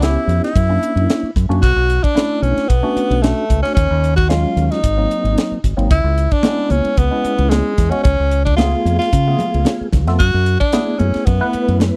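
Slick and funky, this short electric jazz fusion cut has a clear, up-front tenor saxophone carrying the melody with vibrato, subtone and scooped notes over a mellow, flute-like tonewheel organ. The organ's key click and percussive attack turn slowly through a rotary speaker with chorus vibrato, while a dark, round fingered electric bass sits prominently beneath a crisp drum kit with a high-tuned snare and punchy kick. Very quiet, damped congas join at 5.9 seconds, and the whole piece has the dry, close sound of a 1970s studio session.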